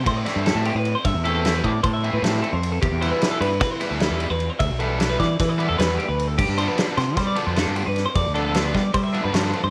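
A bright twelve-string electric guitar opens with tape-echoed arpeggios over a growling, overdriven fingered bass that sits up front, while a faint twangy electric guitar is heard only in the first second. This cut from a longer math rock and midwest emo piece moves in an intricate, wistful 9/8 through Am9, Em7 and G7sus4. A loose indie drum kit with a fat snare, punchy kick and dark cymbals enters at 0.1 seconds, and a double-tracked overdriven electric guitar riff joins at 0.3 seconds, all set in a light studio reverb.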